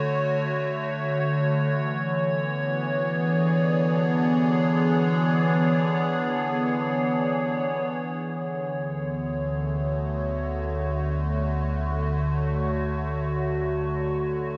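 An evolving, detuned wavetable pad opens this luminous ambient excerpt up front with bright, warbling sustained chords, joined at 2.9 seconds by a resonant, phaser-tinged drone of moving overtones in the background and at 8.2 seconds by a round, deep analog bass, in a dreamy mix soaked in lush hall reverb.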